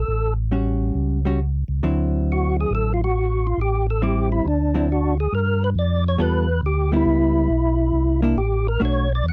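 A dry, close 1970s-style studio sound with light reverb frames this soulful, bluesy swung jazz excerpt at 138 BPM in D mixolydian, shifting to G mixolydian at 5.3 seconds. From the start, a fat, percussive tonewheel organ with key click, light overdrive, chorus vibrato and slow rotary speaker carries the melody over a round, dark tonewheel organ bass, while a clean, compressed hollow-body electric jazz guitar enters at 0.5 seconds with picked chords through harmonies such as D9, G9 and C#m7b5.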